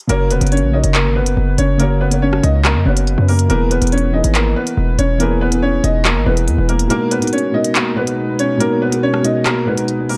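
Crisp electronic hi-hats, handclaps and rim clicks drive a half-time drill groove at 141 BPM in G# minor, setting a tense, menacing hip hop mood as a woody, slightly detuned upright piano carries the melody up front over a dark, boxy concert grand, both treated with tape echo, while a punchy, heavy 808-style bass hits hard until 6.9 s, when an airy, breathy pad with chorus slips in behind for the final stretch of this echo-laden, small-room cut from a longer piece.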